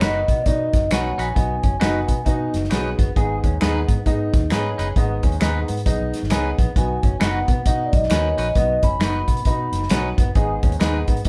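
A live-in-one-room sound with a moderate studio reverb gives this short cut from an uptempo 1960s-style soul tune a close, joyful glow. At 133 BPM in 4/4 with a swung eighth-note feel in B major, a punchy, up-front acoustic drum kit with a medium-tuned snare, kick and hi-hat drives the groove, while a dark, round, foam-muted fingered electric bass sits underneath. A woody upright piano with long sustain fills out the accompaniment, joined by a slightly broken-up, lo-fi electric guitar riff through a small old amp and bright, twangy, scooped stabs from a clean electric guitar. A mellow, dry, close-miked vibraphone played with soft mallets carries the melody, sounding at the start and returning at 6.8 seconds. A very quiet finger snap adds a human touch, and the harmony rests on B before shifting to G#m at 10.4 seconds.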